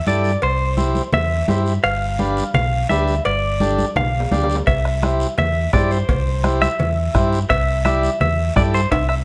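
Cumbia with a sunny, festive mood, heard in a short cut from a longer piece with a straight 4/4 feel. A bright, twangy clean electric guitar, recorded direct and compressed, carries the picked melody up front with spring reverb, while a vintage overdriven combo organ adds buzzy accompaniment. The fingered electric bass sits up front too, dark and round with an amped tone. Raspy guiro and ringing, hard-hand congas fill out the percussion from a live room, with ringing metal-shell cowbell and timbales placed close and dry in the background. A close, dry bombo with a soft beater enters at 4.7 seconds, just after a drum fill, as the harmony moves from C through G7 and back to C under a light overall reverb.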